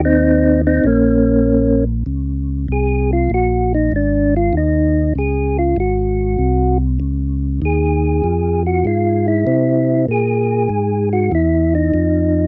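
A dry, close 1970s-style studio sound with light reverb frames this swinging, soulful jazz at 97 BPM in Ab mixolydian, where a full, lightly overdriven tonewheel organ with chorus vibrato and slow rotary speaker carries the bass line up front while a mellow, round, clean percussive tonewheel organ with third-harmonic percussion and its own slow rotary sings the melody, moving into an organ solo from 2.1 seconds over chords such as Dbadd9, Ab7 and Caug7 in this section cut from a longer piece.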